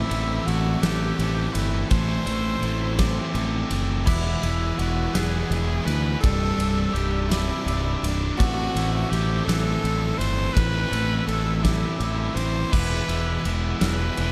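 Post-rock at a slow 56 BPM in 6/8, this soaring, cinematic passage, cut from a longer piece, moves through Am, E, Cadd9 and Am7. A raspy, gritty tenor saxophone carries the close-miked lead with vibrato, scooped notes and tape echo, while a bell-like glockenspiel struck with brass mallets rings out echoing arpeggios in the background. Beneath it, a thick fuzz guitar and a brighter overdriven guitar drive the riff, a growling fingered bass sits up front, and a big rock kit with a tight kick and crash and ride cymbals fills a stone room; at 4.1 seconds a very quiet, twangy pedal steel guitar joins with clean, compressed sustained chords and volume swells, and the mix carries light reverb and lossy compression artefacts.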